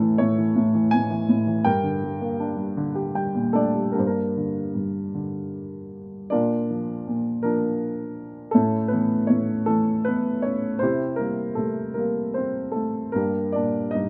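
Set up front in light reverb, a mellow, natural-sounding baby grand with short sustain plays a dark, melancholic stretch of lyrical classical solo piano in 6/8 with free rubato, ranging from G2 to Ab5 and adding a grand piano fill from 2.8 to 4.0 seconds before a new section opens at 4.0 seconds and carries on until this fragment of a longer piece breaks off at 14.1 seconds.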